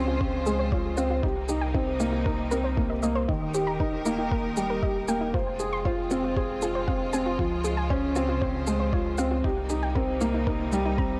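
A felt-muted upright piano sits up front, playing a mellow, intimate riff with audible action noise and a touch of tape echo in this cinematic, moving piano and strings electronica excerpt at 117 BPM in 4/4. Behind it, a lush, distant string section holds bowed chords with vibrato and sidechain pumping, while a deep, round sine sub bass pumps beneath. A soft, dark pluck with chorus and tape echo plays arpeggios in the background from 0.1 s. A muffled, thumpy sampler-style kick drum with studio reverb enters at 0.2 s, joined by an overdriven electronic shaker at 0.5 s. The harmony moves through Dbmaj7, Cm7, Eb and Fm under light reverb and digital ambience, and the mix has the character of a home recording on cassette, cut from a longer piece.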